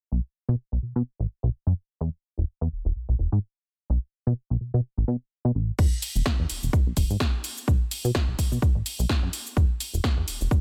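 A close, nearly reverb-free mix carries this joyful, funky slice of filtered disco house at 127 BPM in E major, with a swung 16th-note feel. A plucky, dark sawtooth bass sits up front from the start, its notes decaying under a low-pass filter and sidechain pumping. At 5.8 s the drop lands with a layered, punchy electronic kick and an overdriven analog drum machine of snare, hi-hat, shaker and crash cymbal, with the cymbals, hats and shaker pumping and filtered beneath it.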